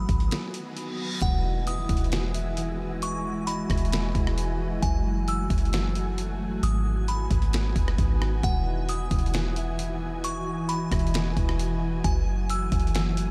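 A half-time 4/4 groove at 133 BPM anchors this melancholic, hazy cloud-rap excerpt, driven by a gritty, pitched-down trip hop sampler-style drum kit with a thumpy kick, medium-tuned snare, rim click and hi-hat, compressed and overdriven and sitting up front. Beneath it, a soft 808-style bass delivers round, sine-like notes in the deep low register, each decaying after a fast attack. A glassy FM pad holds ethereal, mellow chords drenched in ensemble chorus and reverb, pumping against the beat, while a wind-like tuned noise texture breathes airily in the background. High above, a delicate synth tine bell tinkles a chorused melody through analog delay. After a brief break, an electronic reverse cymbal rises from 0.7 s into an impact at 1.2 s, where an acoustic concert harp enters with ringing, fingerpicked arpeggios echoed by analog delay. The chords drift through G#m7, Emaj9 and F#m9 under a light reverb that keeps the mix dreamy.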